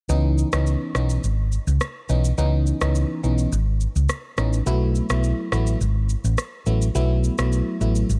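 A round, punchy hollow-body electric bass sits up front in this hypnotic, sultry afrobeats excerpt at 105 BPM in C# minor, under a glassy, bell-like FM electric piano treated with chorus and phaser and a gritty, lo-fi electronic shaker and rim click, all moving from C#m9 to B7sus4 at 4.7 seconds in a dry, dark mix.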